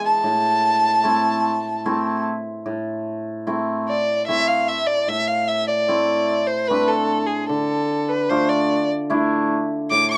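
Bittersweet and soulful, this short klezmer excerpt moves at a slow 74 BPM in 3/4 with a straight feel, set in A harmonic minor. A hammered dulcimer carries the accompaniment from the start, its ringing, shimmering strokes spread between A2 and F4 under the melody. A single bowed violin takes the lead from 0.1 seconds, its dark, focused tone marked by vibrato and a smooth top as it ranges from G#4 up to D6, turning into a solo from 2.7 seconds. The harmony rests on A minor before shifting to D minor at 7.5 seconds. Both instruments sit up front in a dry, close studio sound with a 1970s character and light reverb.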